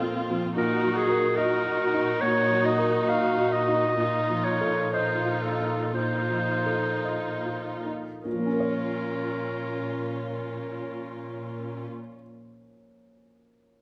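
Over a rubato 4/4 pulse between 48 and 77 BPM that slows through the first 8.2 seconds, this passionate, brooding classical excerpt in Bb minor sets a deep-bassed concert grand piano melody against a clear, up-front solo clarinet second line, a focused, vibrato-rich bowed viola section and a dark, woody cello section anchored on a low Bb, all bathed in recital hall reverb, with F7/Bb and Ebm/Bb harmonies resolving to Bb minor at 8.2 seconds before the piano plays alone from 11.9 to 13.8 seconds.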